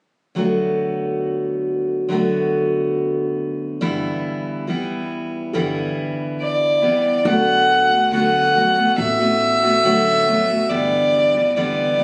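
Folk at a slow 70 BPM in D major, gentle and peaceful, cut from a longer piece: a bright, picked dreadnought steel-string acoustic guitar sits up front from the start, moving between D6 and G6 chords. At 6.4 seconds a single bowed fiddle enters with a rich, smooth melody in light vibrato, up front yet distant, and at 7.3 seconds a woody pizzicato upright bass joins in the background. The sound has the moderate reverb of a recital hall, captured on a phone in the room.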